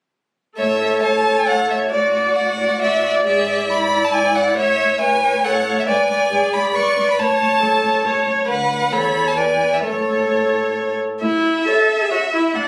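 Heard through a phone in a reverberant room with compression, this spirited, lively classical-period string quartet excerpt in quick triple time unfolds with rubato as a clear, focused violin carries the melody up front over a rich, intense second violin, a distant, rich viola accompaniment and a dark, expressive cello bass with vibrato and portamento, all entering at 0.6 seconds, with the first violin stopping at 12.2 seconds.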